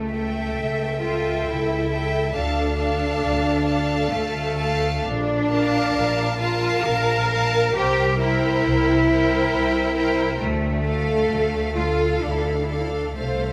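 A rich, even cello section sits up front with a faintly distant sheen, carrying the bass line in this tender, slow romantic movement for string orchestra, cut from a longer piece. At 67 BPM in 3/4 and in D minor, the beats stretch and give with rubato, as the harmony moves from A7/C# through Dm, Bbmaj7 and C7 before settling on Dm at 10.4 s. Beneath the cellos, a clear, intense double bass section with a smooth top adds bowed depth, while a lush, focused viola section fills in the accompaniment with vibrato. High above, a chamber-scale violin section sings the melody with vibrato, and a second violin section plays sul tasto with light vibrato and a soft attack, giving the inner line an intimate, close quality. A moderate scoring stage reverb of about 2.0 s surrounds the ensemble through to 13.5 s.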